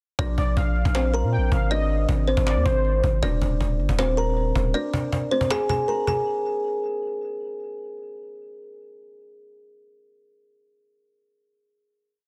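An up-front, woody kalimba carries this short, dark and menacing trap hook at 158 BPM in a half-time feel, its thumb-plucked, hollow, ringing looping melody doubled in octaves and softened by a low-pass filter and tape echo over a Bb, Ab, Eb5 and Bb9 progression. Beneath it, a deep, sine-toned 808-style bass holds long sub-bass notes with pitch slides that follow the kick until 4.7 s, while a compressed, saturated cajon drives the beat with fast hi-hat rolls and faint snares layered with clap. From 0.4 to 3.2 s, a velvety, detuned sawtooth synth lead with vibrato, chorus and tape echo adds a sparse counter-melody, all within a dense, heavily limited modern master.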